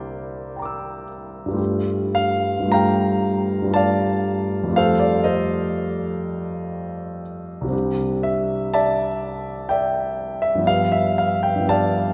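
A warm, intimate concert grand piano, placed up front with audible action noise, deep bass and long sustain, carries this hazy, nocturnal impressionist solo piece in a rubato 3/4 at 50-64 BPM, tuned to A4 = 439 Hz and spanning C2 to E6 through extended chords from C9 and Gm9 to F9, Cadd9 and G9, all bathed in a wet church reverb with a 4.1-second decay across this 12.1-second cut from a longer work.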